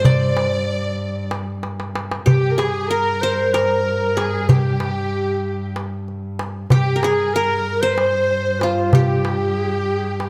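Turkish makam ensemble music in G makam kurdi, a hypnotic, soulful passage cut from a longer piece, moving in 7/8 at 189 BPM counted in eighths. A bright, plectrum-plucked qanun carries the melody up front, shadowed by a breathy clarinet with light vibrato and a lush, bowed symphonic violin section touched by slapback echo. A veiled, muted cello holds a G2 drone beneath, while a crisp metal-shell darbuka drives the rhythm and plays a fill from 1.6 to 2.3 seconds, all set in a moderate recital hall reverb captured by close, detailed microphones.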